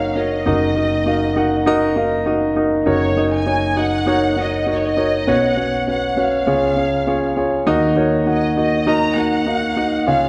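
In a straight 4/4 pulse, this uplifting piano-driven pop passage, cut from a longer piece, is carried by an up-front concert grand piano whose deep bass anchors the accompaniment, while a distant, lush studio violin section sings the melody with vibrato, soft attacks and expressive portamento. The dark, warm production sits in a wet scoring-stage reverb, and around 7.7 seconds the music moves into a new section as the harmony settles back onto a minor chord.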